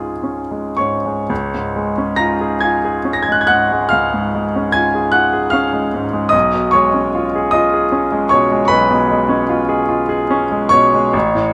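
A bright grand piano carries this tender, dreamy romantic nocturne alone, sitting up front with a polished, intimate tone, long sustain and audible action noise that brings the listener close to the instrument. Moving in 12/8 with free rubato, it spans from deep bass to high treble, and the harmony gains a seventh at 6.3 seconds. A moderate studio reverb lends space to this brief passage cut from a longer piece.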